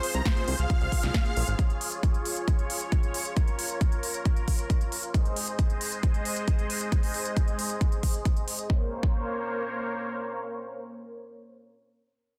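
Uplifting trance in a bittersweet, soaring mood, cut from a longer piece, where a huge, unison supersaw lead with vibrato and digital delay and a fat, detuned analog bass with tube saturation both pump under sidechain and fall away by 1.5 seconds. An evolving, airy supersaw swell carries the sustained chords with vintage 12-bit sampler grit, moving from Fm/C through Db and Ab to Bbmadd9 and holding to 11.7 seconds. A big-room electronic kit with a punchy snare and crisp hats runs to 8.7 seconds, while an up-front, tape-warm kick that was re-recorded in a large room continues to 9.2 seconds, all within digital ambience and a dense, heavily limited modern master.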